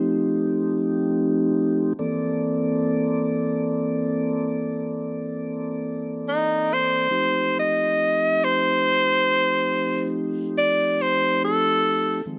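Lightly reverberant and cut from a longer piece, this slow, swaggering and soulful blues in 12/8 at 47 BPM opens with a mellow, flute-like tonewheel organ holding soft sustained chords through a slow rotary speaker over F9 and C13 harmony, before a clear, up-front tenor saxophone enters at 6.3 seconds with a jazz-style solo melody full of vibrato and scooped notes.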